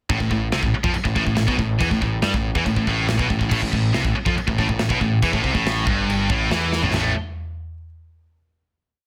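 A bright, high-gain distorted guitar pounds out a single-note riff up front, joined by a second guitar playing its own single-note riff in the background and doubled by a growling, overdriven electric bass playing driving eighth notes, while an acoustic studio drum kit with a punchy kick, medium-tuned snare, toms and bright china and crash cymbals drives a straight 140 BPM metal groove through this relentless, heavy A minor heavy metal piece, with a drum fill at 6.7 seconds before everything lands on a final A5 chord at 6.9 seconds, all under light reverb and a dense, heavily limited modern master.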